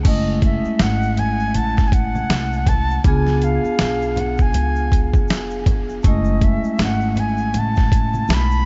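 Nocturnal and cool, this short jazz-hop excerpt settles into a relaxed swung groove at 80 BPM over F#m7 and C#7b9, with a gritty, compressed boom bap kit up front, its thumpy kick and medium-tuned snare pitched down beneath hi-hat and crash. A woody pizzicato upright bass with gut strings and a dark, ringing vibraphone played with medium hard mallets and the motor off carry the harmony, while egg shaker and soft-handed congas sit in the background. From 0.1 seconds a breathy, reedy concert flute takes the melody, close-miked with a crisp attack, vibrato and a touch of delay, all in a small room with light reverb and a muted top end.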